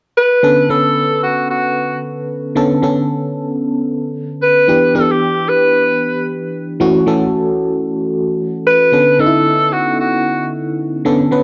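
A bright alto saxophone opens this slick, bouncy R&B passage at 0.2 s, carrying a pop-style solo melody between F#4 and B4 with a light vibrato and a vintage tone. An FM electric piano enters at 0.4 s to accompany it, its glassy, bell-like attack decaying, while chorus and tremolo give it a warbling shimmer over a noise layer. The groove sits at 113 BPM in 4/4 with a swung sixteenth-note feel, moving in B minor through Bm9, G6 and F#m7 before returning to Bm9. Both parts sit up front, each coloured by cassette tape and plate reverb, inside a short, wet studio reverb with the lo-fi character of a home cassette recording. The saxophone drops out at 10.5 s, leaving the electric piano to carry on alone until 11.4 s, in this fragment cut from a longer piece.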